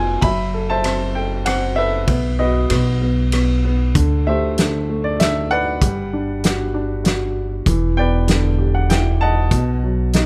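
A dry, close recording with little reverb opens this short cut from an intimate, heartbroken acoustic folk-pop ballad in a straight 3/4. A woody upright piano with short sustain carries the melody up front, over a dark, thumpy pizzicato upright bass on gut strings. A loose indie kit enters at 0.2 s with a fat snare, punchy kick, rim clicks, hi-hat and ride, its gritty, saturated tone rolled off at the top, as the harmony moves from F#m7b5 through Gmaj7 and Em7 before resting on B.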